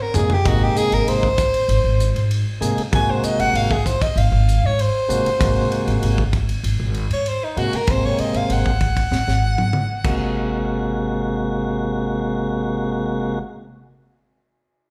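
A tight, straight 4/4 funk groove at 97 BPM drives this soaring, funky electric jazz fusion excerpt in Ab mixolydian, which opens on an Ab9 chord. The acoustic drum kit sits mid-forward with a small-room sound, a high-tuned snare and a tight kick alongside hi-hat, ride, crash and toms, opening with a brief fill and playing another from 9.1 seconds. Beneath it, a pizzicato upright bass on gut strings gives a woody, thumpy, dark low end, while an up-front tonewheel organ, lightly overdriven with vibrato from a stationary speaker, fills out the harmony with a warm, full tone. The close-miked soprano saxophone plays a clear, jazz-style solo with light vibrato through the opening stretch. Sax and drums stop at 10.2 seconds, leaving organ and bass to carry a new section that begins at 10.4 seconds, the two playing on until 13.4 seconds, the whole band playing live in one room within a wet, large studio reverb.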